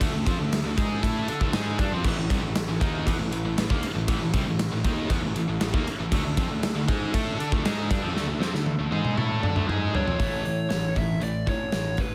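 A punchy gated 80s drum kit drives this energetic, swaggering hard rock excerpt at 118 BPM in 4/4, its bright cymbals and medium-tuned snare sounding in a bright, gated stone room, with a fill from 8.2 to 10.2 seconds. Two distorted guitars, one scooped and high-gain and the other tight, sit in the background playing riffs over D5 and A chords, while a fuzzy, overdriven bass adds grit and a very quiet, reedy tonewheel organ with fast rotary speaker and key click holds sustained chords until 10.2 seconds. At 10.0 seconds a dark, high-gain lead guitar steps up front with a melody carrying a slapback echo.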